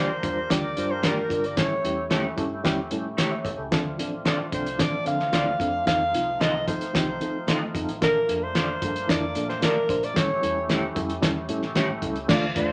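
Uptempo 1960s-style soul at 112 BPM in a straight 4/4, passionate and urgent, cut from a longer piece and moving through Gm7, A7, Dm7, F7 and Bbmaj7 in a moderate club reverb. A breathy, subtoned alto saxophone with vibrato and scooped notes sings the melody up front over a reedy, slightly out-of-tune electric piano with fast tremolo, dark slightly broken-up guitar stabs that stop at 11.9 s, and a lightly overdriven tonewheel organ with key click and fast rotary speaker sustaining chords in the background. A muffled, cloth-damped drum kit with a fat snare sits up front beside very quiet high-tuned congas and a round, foam-muted bass, while a distant horn section adds a brief second line at 12.3 s.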